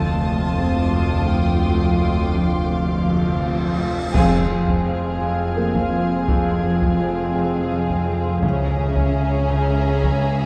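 Mysterious and ominous, this suspense film-score passage in 3/4 opens with a glassy, ethereal glass harmonica holding chords over a bright, ringing harp riff, a chorused analog drone, and bowed cello and lush double bass sections carrying the bass. A viola section accompanies, a distant violin section adds high texture, and a soft-attack violin section sings the melody with portamento and vibrato, while a muted upright piano with audible action noise joins at 0.6 s. A huge, dark cymbal swell from 3.1 s leads to an impact at 4.1 s, where a compressed, saturated taiko ensemble and a second violin line enter, all set in moderate scoring-stage reverb with a warm production.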